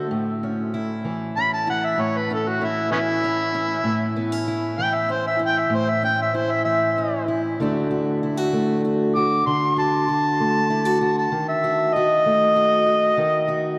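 Drenched in a vast cathedral reverb, this swaggering, gritty fragment of acoustic country blues rolls along at 64 BPM in 12/8: a boxy, fresh-stringed parlour guitar fingerpicks the accompaniment up front over A, D and a D#dim, while from 1.4 seconds an amplified, overdriven harmonica takes the jazz-style solo with light vibrato, tongue slaps and scooped notes.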